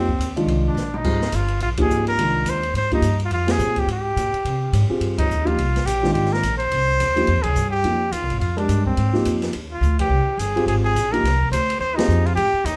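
A bright, close-miked trumpet, a dark baby grand piano and a woody upright bass start together at the top of this cut from a longer modal jazz piece, with an open acoustic drum kit joining at 0.1 seconds. The tempo is a brisk 212 BPM in 4/4 with a swung eighth-note feel, and the harmony rests on a single Fm9 chord in F dorian, giving the passage a hypnotic, cool mood. Up front, the trumpet carries the solo melody in a jazz style with a light vibrato, while the piano's mellow, short-sustained voicings supply accompaniment and the pizzicato bass, with its steel strings, sits close and warm beneath. The drums use crash, ride, hi-hat, snare, toms and kick, with dark cymbals, a medium-tuned snare and a boomy kick, adding fills at 0.8 and 9.8 seconds, and the whole band hits accents at several points along the way. A moderate studio reverb places the group a little further back in the room, and the natural sound lasts to about 12.8 seconds.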